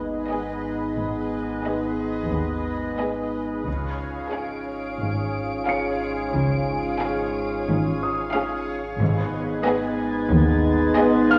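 In a straight 4/4, this eerie, tense cinematic excerpt holds sustained chords on mellow French horns, distant trombones, a bright, bubbling stepped-filter synth texture and a grand piano texture over muted cellos and double basses and an ominous rumbling drone, while con sordino violins carry a veiled melody with a second violin line and violas beneath, dark symphonic violins join at 3.7 s, and hard-mallet timpani strike at 9.0 s, all of it coloured by scoring-stage reverb and worn, warbling cassette tape.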